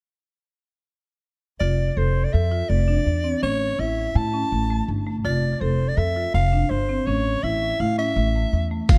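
In a straight 5/4 pulse, this bright, intricate progressive instrumental fragment sets a raspy, growling soprano saxophone melody with vibrato and scooped notes, heard up front with delay, over delayed rosewood marimba arpeggios and a woody pizzicato upright bass moving through Fmaj7, A and F chords in a dark, small-room production, before a gritty, overdriven, pitched-down sampler-style kit of hi-hat and thumpy kick bursts in at 8.9 seconds.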